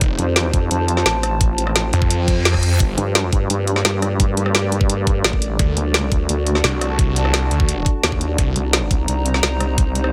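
This is dark technical drum and bass at 172 BPM in G minor, a tense excerpt cut from a longer piece, moving through F, G minor, D and C minor seventh. Up front, a knocking electronic kick drives a layered kit of woody snare, rim click and metallic hi-hats that was re-recorded in a small room. Two basses carry the low end. A snarling, detuned sawtooth bass with distortion and tube saturation growls from 0.0 to 3.0 seconds and again from 5.6 to 8.5 seconds. Alongside it, a nasal vowel-sweep wobble bass, shaped by a resonant formant filter and chorus, enters at 0.2 seconds and holds on. Behind them, a deep, moody ambient pad with a sub octave sustains slow-attack chords, and a warbling, nostalgic lo-fi tape pad with ring modulation adds a slow-attack texture, both under sidechain pumping. A brief reverse cymbal sweeps in at 2.2 seconds, all set in a light reverb.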